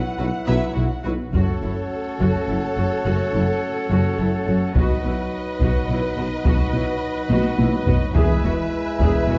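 Heavy-stick taiko drums boom from a distance in a large room from 1.3 s, driving this dramatic, relentless cinematic orchestral excerpt in 3/4 at 106 BPM in F# dorian, with a drum fill at 7.3 s. Rich, lush bowed violins carry the vibrato melody over a clear, intense second violin line, while clear woodwinds and dark French horns hold sustained chords and warm violas fill the background. Close cellos and distant double basses anchor the bass, joined only briefly at the start by a mellow tuba, all within a dark production and moderate scoring-stage reverb as the harmony moves from Bsus4 through F#m and B to E.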